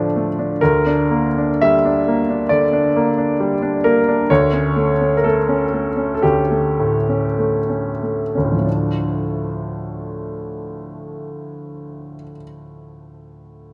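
A clear, intimate baby grand piano sits up front in this short cut from a longer romantic character piece for solo piano, its natural tone carrying audible action noise as it moves through D minor in 4/4 at a rubato 44-68 BPM, tuned to A4 = 439 Hz. The mood is bittersweet and stormy, with the tempo slowing down from the start to 8.7 seconds as the harmony passes from Dm through Gm/D and A7/D before returning to Dm at 8.7 seconds, where a new section begins. A moderate scoring-stage reverb with a 2.0-second decay gives the piano, spanning D2 to E5, a sense of space.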